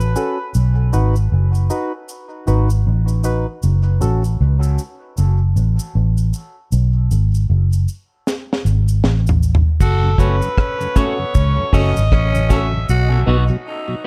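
Hypnotic and meditative, this dub reggae passage opens as a break, with a dark, foam-muted fingered electric bass up front, a faint cabasa, a brief burst of overdriven harmonica and hollow, nasal organ stabs bathed in chorus and dub echo. A dry, deep reggae drum kit with a high-tuned snare arrives with a fill at 8.3 seconds, and at 9.8 seconds the gritty harmonica returns beside a raspy, growling tenor saxophone, both trailing dub echo. A mellow tonewheel organ with slow rotary speaker sits in the background while a clean, picked electric guitar adds echoed accompaniment, inside a small, echo-heavy room.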